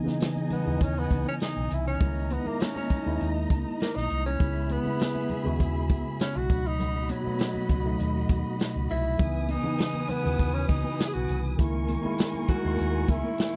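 A distant, roomy tenor saxophone carries the melody as a jazz-style solo, its subtone voice and scooped notes drifting over a lush 1970s-style soul groove in C# minor at 100 BPM. Beneath it, a worn, slightly out-of-tune tine electric piano, clean and colored by a phaser through a combo amp, lays down the accompaniment on chords such as C#m9, E6/C#, B7/C# and F#13/C#. A dark studio violin section supplies a bowed second line, expressive and smooth-topped with vibrato, soft attacks and portamento. The vintage drum kit sits up front with a punchy kick, medium-tuned snare, hi-hat and a rolled-off top, while a round, amped hollow-body short-scale bass holds the low end and high-tuned, thick-skinned congas add very quiet percussion. The dry, close recording gives this bittersweet, smooth excerpt from a longer piece an intimate feel across its 13.6 seconds.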